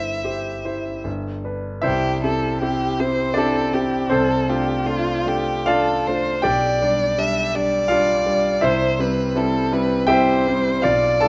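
Lyrical and tender, this short fragment of a romantic classical duo for violin and grand piano moves in a gentle three-beat metre with a flexible, rubato feel. A single bowed violin carries the melody from the very start, its warm tone shaped by expressive vibrato and portamento and topped with a smooth upper edge. The concert grand piano accompanies throughout, sounding clear, with deep bass and a slightly vintage character. After a brief opening phrase, a longer second section begins at 1.8 seconds and continues to the cut at 11.3 seconds. Both instruments sit up front, captured by close, detailed microphones, with a light reverb around them.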